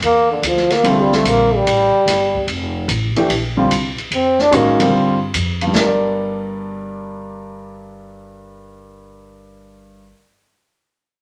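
A swung four-beat pulse sets this modal jazz excerpt moving, carried by an open acoustic drum kit with an airy, polished sound, dark cymbals, a medium-tuned snare, a boomy kick, hi-hat and ride, until the drums drop out at 5.9 seconds. Beneath it, a pizzicato upright bass with a woody, steel-strung tone sits low in the mix, while a baby grand piano enters at 0.8 seconds and stays up front as the accompaniment. The bright trombone, also up front, plays a vintage-flavoured jazz solo with light vibrato, finishing its line at 5.0 seconds. The harmony hangs on a suspended ninth chord before settling onto a minor chord, giving the passage a searching, cool mood. A wet studio reverb wraps the whole recording in its space.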